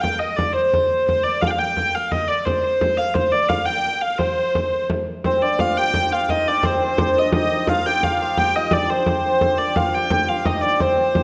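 A dark, woody hurdy-gurdy carries the melody up front in this mysterious, ancient-sounding medieval dance in C minor, moving in a straight 6/8 at 115 BPM over a deep, close and dry frame drum played with soft hands. At 5.2 seconds a bright, shimmering hammered dulcimer joins with a ringing second line beneath the melody. A wet recital hall reverb surrounds the short cut, which is taken from a longer piece and tuned to A4 = 442 Hz.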